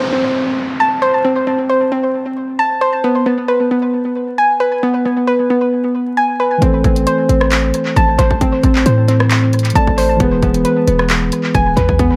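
Trap-flavoured hip hop in a half-time feel, melancholic and eerie, this excerpt opens with a soft, round pluck playing dark arpeggios up front, coloured by chorus and tape echo, while a brief electronic downlifter sounds beneath it for the first 3 seconds. At 6.6 seconds a mellow, clean tine electric piano, a deep, boomy 808-style bass and a produced trap kit of hard-clipped kick, bright hi-hats, handclaps and rim clicks enter, the drums sitting up front with tape echo of their own. The echo-heavy mix has light reverb, digital ambience and a layer of vinyl crackle.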